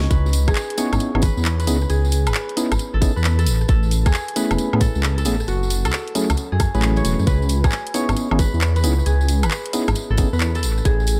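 Lightly reverberant and echo-heavy, this excerpt of swung two-step UK garage has a soulful, late-night mood, built on a tight, up-front electronic kick and a deep, rumbling detuned saw bass that beats darkly beneath the groove. A layered garage kit of handclaps, hi-hat, rim click and woodblock carries analog delay, a jingly tambourine sits close behind it, and hollow, full-bodied organ stabs, coloured by chorus, cassette-tape grit and delay, enter at 0.8 seconds and stop at 10.3 seconds. Over chords moving from C#m9 through Amaj7 and F#m9, a mellow, fingerpicked concert harp rings softly in the background, trailed by dub echo.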